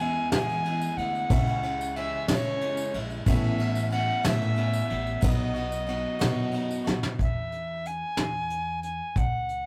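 Indie folk in an uplifting mood at 61 BPM in 6/8 and E major, with an airy, chiffy soprano recorder carrying the tongued, vibrato-tinged melody up front over a mellow upright piano in the background, a boxy, finger-squeaking swing-picked acoustic guitar and a jingly tambourine set back, until a drum fill at 6.9 s leads into a barer passage from 7.2 s where the woody pizzicato upright bass and the brushed kit, with its fat snare and dark cymbals, carry on beneath the recorder, all in a rough rehearsal-room recording with a moderate booth ambience and warm saturation.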